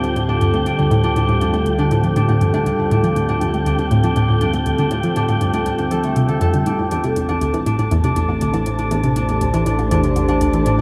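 A straight 4/4 pulse drives this hypnotic, cosmic stretch of sequencer-driven space music, cut from a longer piece, as a faint layer of electronic hi-hat and woodblock with metallic, tape-warmed hats gradually fades in across the full 10.8 seconds. A bright, detuned analog pluck carries the riff with chorus and tape echo, while a concert harp ripples through fingerpicked, ringing arpeggios and a fat, wave-folded analog bass holds the low end. Alongside them an evolving, morphing wavetable pad sustains the chords, moving from D minor to A minor at 6.7 seconds, and an airy, breathy wind-like noise texture drifts high in a lush hall reverb.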